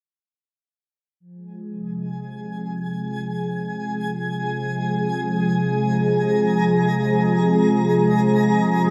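A swirling, detuned sawtooth analog pad with phaser and chorus sits up front, fading in at 1.2 seconds on a sustained F minor chord, while a twinkling granular texture with octave-up FM shimmer and its own reverb fades in at 2.2 seconds above it, giving this hypnotic, cosmic excerpt of free-time, sequencer-driven ambient space music in F minor, tuned to A4 = 444 Hz, a dark production bathed in huge, long-tailed reverb that runs to 8.9 seconds.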